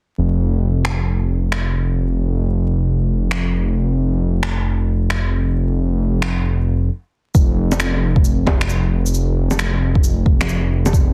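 A dark, detuned sawtooth bass sits up front from the start, its deep, rumbling unison tone beating against itself, with square and sine colours beneath a fast attack and long sustain that fills the low end around F1. Electronic finger snaps, shaker and bongos join at 0.8 seconds, their produced, tape-warm sound re-recorded in a large room, with soft clipping on the snare. The feel is wistful and ghostly future garage, with a swung sixteenth-note groove giving the percussion a loose, shuffling lean. After a brief stop from 6.9 seconds, a deep electronic kick drum arrives at 7.3 seconds and anchors the final stretch, sharing the percussion's tape character and large-room re-recording. The master is dense and heavily limited, dry, with vinyl crackle adding a faded, haunted patina to this cut from a longer piece.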